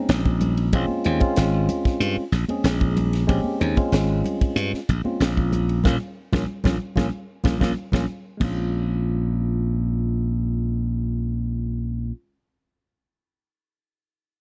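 A clean tine electric piano opens this funky, intense electric jazz fusion excerpt in Bb minor at 94 BPM, joined at once by a growly, punchy slap bass up front and a tight, dry funk drum kit with bright cymbals and a high-tuned snare, while soft-handed congas sit in the background. The band hits a shared accent from 5.8 to 8.4 seconds, after which the drums drop out at 8.6 seconds and the congas just after. Electric piano and bass carry on alone to the end in a small, dark-sounding room.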